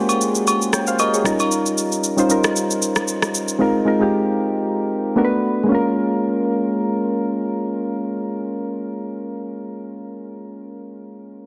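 A lightly swung sixteenth-note groove in 4/4 opens this late-night, soulful amapiano excerpt, with an electronic shaker and rim click sitting up front and a touch of soft clipping on the snare. Agogo bells add an acoustic, compressed accent at the start before dropping away at 1.5 seconds, and the drums stop at 3.6 seconds. From there the soft electric-piano-like synth keys carry the piece alone until 11.5 seconds, their round, warbling, vintage tone shaded by chorus and a dark, full-bodied decay. The harmony moves through Bbm7, Eb9 and Ab69, slips briefly to Bm7 and returns to Bbm7 as the second section arrives. A lush hall reverb surrounds the sound, and the dense, heavily limited master keeps it close and modern.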